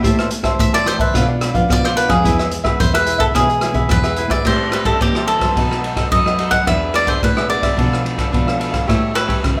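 A moderate large-studio reverb gives this short cut from a longer piece the feel of a band playing live together in one room. It is a lively, nostalgic blend of samba and choro in A minor, moving at 108 BPM in a straight 4/4. A warm, picked cavaquinho carries the melody from 0.6 seconds, crisp and acoustic, over a second, up-front cavaquinho picking a warm, crisp accompaniment and a fingerpicked classical nylon-string guitar sitting in the background with audible finger squeak. A single bowed cello supplies the bass line, dark and expressive with vibrato, portamento and a smooth top. The acoustic jazz kit is up front, warm and smooth, its boomy kick, rim clicks, hi-hat, ride and crash all carrying dark cymbals and a rolled-off top. The harmony moves from Am7 through Bdim and E in the opening section, then from 4.5 seconds returns to Am7 and moves through B7, E7 and Bm7b5 before landing on A7.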